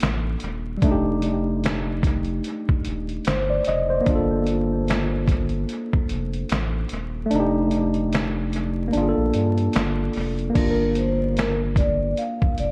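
A worn, slightly out-of-tune tine electric piano, played through a combo amp with cassette tape coloring, a low-pass filter and dub echo, moves from a rootless Gm7 to F13 and back to Gm7 in this reflective, hazy lo-fi hip hop fragment at 74 BPM in G minor. It plays over a deep, saturated sine sub bass and a gritty, pitched-down sampler-style trip hop kit of thumpy kick, snare, hi-hat, handclaps and crash, with the kick muted from 7.3 to 10.6 seconds. Then a metallic, ringing vibraphone with slow motor vibrato takes the melody at 10.6 seconds, inside a spring-reverb space flecked with vinyl crackle and lossy compression artefacts.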